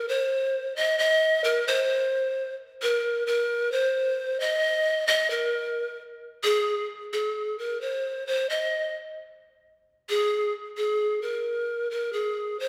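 The recording sits in a wet scoring-stage reverb with a 1.8-second decay, heard from further back in the room, though the pan flute itself stays up front. This is a bouncy, festive calypso fragment at 132 BPM in 4/4, with a light swing on the sixteenths, cut from a longer piece. A single breathy pan flute carries everything as the solo voice from 0.0 to 12.7 seconds, moving between Ab4 and Eb5. Its bamboo tone has a soft attack with a touch of chiff at the start of notes, a gentle vibrato and a slightly unsteady delivery that gives it a human, airy charm. The music settles into Ab major from 6.4 seconds, where a new section begins, and the tuning sits a little sharp of standard at A4 = 445 Hz.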